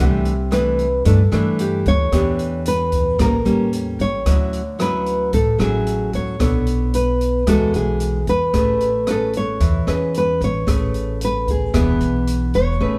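A moderate stone-room reverb surrounds this breezy, romantic bossa nova played live in one room, where an up-front, dark, fingerpicked nylon-string guitar carries the melody with audible finger squeak over a second, full-bodied fingerpicked nylon-string guitar's chords, a woody, thumpy pizzicato upright bass on gut strings, and a natural open jazz kit of hi-hat, rim click and boomy kick.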